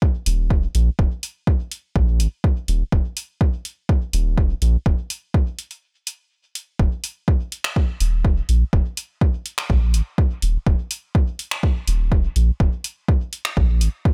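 A punchy, layered electronic kick opens this cavernous, nocturnal dub techno excerpt in a straight four, sitting up front and re-recorded in a small room. A deep, round sub bass with a soft triangle-and-square tone, fast attack and sustained notes follows almost at once, pumping under sidechain between Eb1 and Bb1, while a quieter deep house kit adds finger snaps and dark hi-hats. The dry mix drops into a brief break from 5.8 to 6.8 seconds before the groove carries on.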